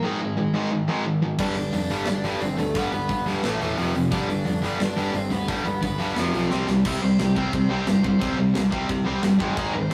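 Punk rock at 176 BPM in a straight 4/4, this short, rowdy cut from a longer piece opens with two crunchy guitars driving the riff: an up-front overdriven one and a tighter distorted one tucked in the background, joined by a warm, raw garage guitar carrying the melody. At 1.4 seconds a fuzzy, direct-and-amped electric bass and a tight metal drum kit enter, the kit bright in its cymbals with a medium-tuned snare and a tight kick, set in an airy, polished space. The opening stretch runs in half time over chords moving among Ab5, G, A5, F5 and C5, before a drum fill at 6.5 seconds kicks things forward. From 6.8 seconds an overdriven electric guitar solo breaks out and carries the energy through to the end, settling on Ab. The whole track has a rough rehearsal-room character, with tube saturation and a moderate stone-room reverb giving it a gritty, live edge.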